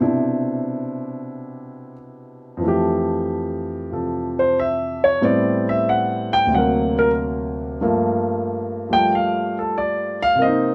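A light reverb surrounds a warm concert grand piano that sits up front with a deep bass, in a short, playful solo jazz fragment in F major at 92 BPM with a swung 4/4 feel. The piano plays alone throughout, ranging from D2 up to G5, and moves from Cmaj9 into a new passage at 2.6 seconds that opens on Fmaj9 and passes through Am9, D7b13 and Gm9 before the fragment ends at 10.7 seconds.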